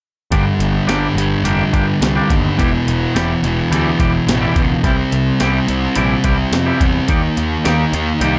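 A straight 4/4 pulse drives this short cut from a longer quiet-loud alternative rock piece, with an angsty, dark mood. A breakbeat sampler-style drum kit, compressed and gritty, with a thumpy kick, a medium-tuned snare and hi-hat, sounds re-recorded in a small room. Up front, a thick fuzz guitar grinds out a distorted riff, while a picked bass, overdriven and punchy, holds down the low end. Above them, a twangy, clean electric guitar plays arpeggios coated in lush chorus. The harmony moves from Gm through Em and C to Eb, and the band plays together from 0.3 seconds to about 8.4 seconds under a light reverb and a dulled top end.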